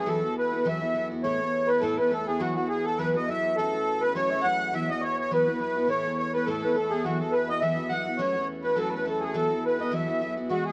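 Swung eighths in 4/4 drive this lively, bright Celtic folk fragment, where a reedy, sweet accordion carries the melody up front with light tremolo tuning, a dark soprano saxophone with vibrato and tape echo traces a distant, classical-style second line in the background, a full-bodied picked jumbo steel-string acoustic guitar supplies the accompaniment, and a mellow, breathing pedal harmonium holds a low drone, the mix set in a moderate plate reverb as the chords move between Esus2, Asus2 and F#m.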